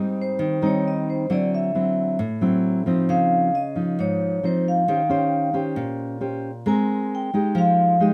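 Bossa nova at 134 BPM in Ab major with a sunny, romantic mood, this brief excerpt sets a metallic, ringing vibraphone melody, struck with medium hard mallets with the motor off and heard in a boxy small room, over an up-front, warm nylon-string guitar accompaniment thumb-plucked on fresh strings in a classical manner, moving through chords from Abmaj7 and D9 to Dbmaj9, Eb13, Abmaj9 and Fm9 inside a moderate studio reverb.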